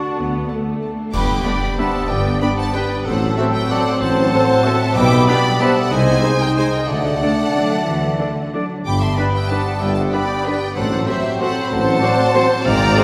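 Festive and sweeping, this orchestral ballroom waltz in 3/4 sways with uneven, rubato beats, its rich, close violin section singing the vibrato-laden melody over a lush second violin line, a very quiet viola section, and a ringing harp spreading arpeggios. Cellos and double basses hold the bass with a tuba's dark tone, while a flute section, a punchy cor anglais, a roomy clarinet and a mellow bassoon add supporting lines, and French horns sustain soft chords under distant trumpet stabs. A burst of bright clash cymbals and concert bass drum marks the full band's accent at 1.1 seconds, and the whole passage, cut from a longer piece, blooms in a reverberant concert hall.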